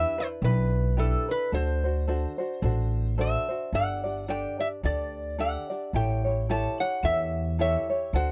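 Hawaiian music with a dreamy, sunny mood, this brief cut from a longer piece moves at 109 BPM in 4/4 with a gentle swing on the eighth notes. A metal-body resonator slide guitar carries the melody from start to finish, its slide tone metallic and nasal, picked with fingerpicks and placed up front. A fingerpicked tenor ukulele supplies light, bright accompaniment throughout, while a pizzicato upright bass with gut strings gives a woody, thumpy low end. The harmony moves from Em7 through D7 and Gsus2 to A7 by 5.9 seconds. The sound is dry and close, like a 1970s studio recording, with little reverb around the three acoustic instruments.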